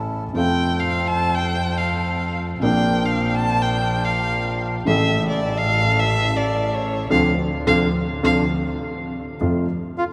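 A dark, mellow grand piano with audible action noise, a nasal, woody bowed double bass and boxy, reedy bandoneon stabs open this elegant, passionate tango excerpt in D minor, moving at 106 BPM in a rubato 4/4. A single bowed violin joins at 0.4 seconds with an expressive, smooth-topped solo line full of vibrato and portamento, set up front, and a band accent arrives at 7.1 seconds. The whole passage sits in a cathedral reverb with a 6.2-second tail, and an airy bandoneon melody enters at 10.0 seconds.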